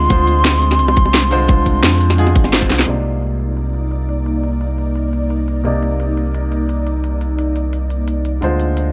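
A mellow silver concert flute opens this lush, dreamy liquid drum and bass excerpt at 173 BPM in C minor, carrying its melody on a high C with soft-attack vibrato through a digital delay before it falls away at 2.5 seconds. Beneath it, a clear concert grand piano with deep bass plays accompaniment through a low-pass filter and dub echo, while an ethereal pad of detuned sawtooth and triangle voices sustains chords with ensemble chorus, built-in reverb and sidechain pumping. A deep, full sub bass with an added octave sits up front, and a crisp, tape-warm drum kit with a cracking snare runs nearly the whole length, joined early by a tight electronic kick and close, dry, low-tuned bongos played with hard hands. A band accent at 2.5 seconds and a drum fill lead into a shift from Dm7b5 to Cm9 at 2.9 seconds, where filter sweeps begin on the drums and piano. A light small-room reverb gives the whole a gently enclosed, dreamy space.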